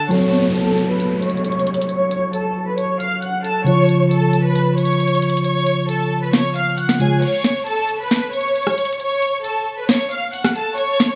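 A lush violin section and a mellow, clean tine electric piano open this melancholic, menacing trap excerpt, with a filter sweep shaping the opening passage. The violins carry the melody with vibrato, portamento and a soft, bowed attack, sounding expressive yet distant and trailed by digital delay. Beneath them, the electric piano's accompaniment moves from F# minor to C#, while an electronic downlifter falls away by 3.7 seconds. A trap drum kit sits up front in a half-time feel, its sharp snare, crisp hi-hats, rim clicks and crash cymbal giving the track a produced edge. At 7.2 seconds the electric piano stops and the harmony returns to a rootless F# minor, leaving the violins and drums to close out the passage. Vinyl crackle, a small room ambience and light reverb lend the whole a dusty, intimate atmosphere.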